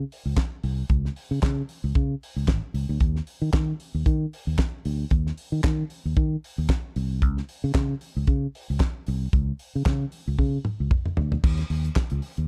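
Danceable and driving, this dry, dark-toned disco excerpt pairs a round, up-front fingered electric bass with a damped 70s acoustic drum kit of tight kick, fat snare, hi-hat, handclaps, toms and crash cymbal, all with a lightly swung sixteenth-note feel, until a drum fill from 10.4 s carries into a new section at 11.4 s.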